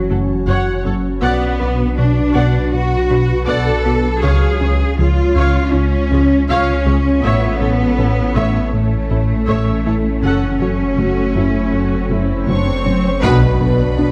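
Set in a moderate scoring-stage reverb, this tense, vast fragment of a hybrid orchestral and electronic film score opens on a dark, organ-like pad with ensemble chorus, a lush, up-front cello section, a very quiet, woody double bass section, a deep sine sub bass and a smooth synth bass riff in the background. A rich viola section plays accompaniment while a soft, round pluck traces faint arpeggios. From 12.0 s an electronic swell leads into an impact, violin sections enter at 12.5 s with a vibrato melody and a distant second line, and at 13.2 s background French horns and clear trombones add sustained chords over a barely audible taiko ensemble played with hard sticks.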